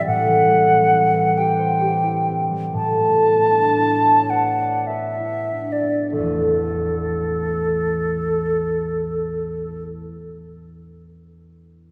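Flute and harp begin together in this brief fragment of an impressionist classical duo, which is wistful and mysterious in A dorian. The concert flute carries the melody between A4 and A5 with a pure, expressive tone, gentle vibrato and a soft attack, sitting up front. Beneath it, the concert harp supplies thumb-plucked, ringing accompaniment that reaches from A1 up to D5. In a free 3/4 with rubato, the tempo moves between 46 and 70 BPM and slows through the opening 6.1 seconds as the harmony shifts from Am9 to Bm11/A. A new passage settles on Asus2 from 6.1 seconds, and the flute falls silent at 9.8 seconds, just before the harp. A long, wet church reverb surrounds both instruments and gives the duo a spacious, hall-like depth.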